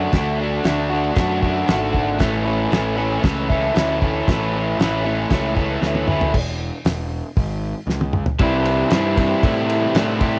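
A bright, double-tracked overdriven electric guitar sits up front, picking a rowdy, raw garage rock riff with cassette tape coloring in a straight 4/4. Beneath it, a fuzz-laden picked electric bass adds overdriven weight, while a cloth-damped, thuddy drum kit with a fat snare, tight kick and dark cymbals carries vintage 12-bit sampler grit and cassette tape character. Captured as a light-reverb home cassette recording, this cut from a longer piece shifts sections at 6.3 and 8.4 seconds, each change set up by a drum fill.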